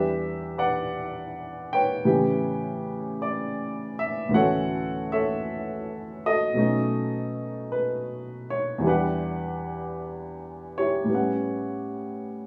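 Jazz ballad at a slow 53 BPM in 4/4 with a gentle swing, tender and late-night in mood, cut from a longer piece. A solo upright piano carries the whole 12.5 seconds, its woody, natural tone sitting up front and ranging from deep bass notes to the upper register. The harmony moves through Em7, A9, Dmaj13 and B7 before returning to Em7 and A13, softened by light studio reverb.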